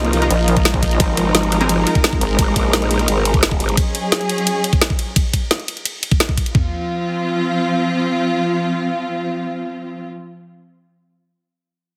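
A heavily compressed, radio-like sound with light reverb frames this dark, mechanical slice of technical drum and bass, cut from a longer piece and opening straight into a drop. A growling, overdriven growl bass that pumps with the sidechain and a nasal, resonant vowel-sweep wobble bass sit beneath lush, bowed studio strings with vibrato, a punchy detuned unison pluck arpeggio with tape echo, faint orchestra-hit-like synth stabs and a deep, moody ambient pad in the background. Two layered electronic drum kits drive it, one with a knocking, overdriven kick and toms, the other with a woody snare, bright hats and ride, until the drums stop at 6.6 seconds and the strings carry on alone to 10.1 seconds.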